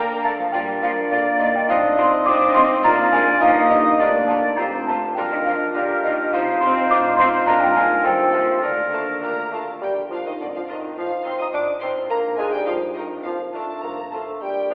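A woody folk marimba, played with soft mallets, carries the melody of this playful, mischievous film cue in Bb major, moving at 104 BPM in a straight 2/4, while a distant violin section with vibrato also plays the melody very quietly. Around them, a clear oboe, an airy, hollow silver flute, a focused higher violin section and a soft-attack clarinet weave second lines. An up-front bassoon and a smooth, very quiet viola section fill in the accompaniment. A French horn section holds sustained chords in the background, a thumb-plucked concert harp rings out arpeggios, and a lush cello section and an even double bass section anchor the bass. The clarinet, oboe, flute and horns fall away at 9.5 seconds, just before a new section returns to Bb at 9.8 seconds, leaving marimba, strings, harp and bassoon to carry on. A reverberant hall lends a long, wet tail, yet the cut, lifted from a longer piece, has a thin, telephone-like sound.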